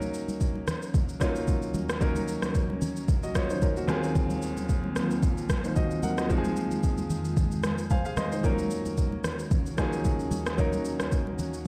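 A soulful, deep amapiano groove opens at once with a smooth, vintage grand piano up front, an electronic drum kit built on a soft kick, rim click and shaker, and very quiet congas, thick-skinned, medium-tuned and close and dry. The drums have a tape-warm, produced character, re-recorded in a large room and sitting forward in the mix over a swung sixteenth-note feel in 4/4. At 0.8 seconds an ethereal, airy pad enters in the background, its detuned sawtooth and triangle layers in unison, with a slow attack, long release, ensemble chorus, built-in reverb and sidechain pumping giving it a mellow, breathing presence. The piano plays a brief fill from 7.6 to 8.4 seconds as the harmony moves from Ebm7 through Ab13/Eb and Fm7 back to Ebm7. Light reverb and digital ambience round out a dark production in this short cut from a longer piece.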